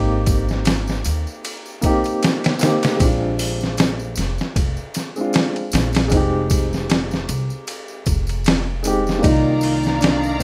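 Hypnotic and brooding, this rough home-demo trip hop excerpt at 77 BPM sways on a swung 16th-note feel as a soft, felt-muted upright piano with tremolo and tape echo and a woody pizzicato upright bass with tube saturation move through Abmaj9, Bb7 and Fm7 beneath a gritty, pitched-down, overdriven sampler drum kit, up front in the mix, with a thumpy kick and a medium-tuned snare, while a tambourine sits in the background, until at 9.2 s a smooth, bowed symphonic string section and a dark, clean electric guitar playing arpeggios with 12-bit sampler grit arrive on Cm11.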